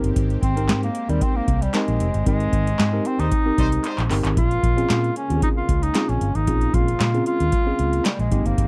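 A booming, overdriven analog drum machine with handclaps, metallic hats and a deep kick drives this slick, danceable early-eighties boogie funk excerpt from the start, together with a round, foam-muted fingered bass, a worn, slightly out-of-tune tine electric piano and a lush, nasal unison pad with chorus in the background; an up-front bass clarinet carries the melody from 0.4 seconds, and a distant, roomy horn section adds a second line from 3.2 to 4.0 seconds during a band accent and drum fill, captured in a dry, close studio sound.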